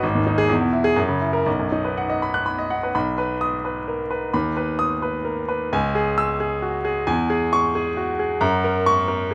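A clear, intimate grand piano plays alone from the first moment in this sparkling, heroic classical virtuoso study in B major, tuned to A4 = 443 Hz, moving in a rubato 3/4 at roughly 119-136 BPM across a span from G#1 to F#6, its natural, up-front sound carrying audible action noise within light reverb as the harmony passes from G#5 through E, F#7 and B to C#m and F#, in a passage cut from a longer piece.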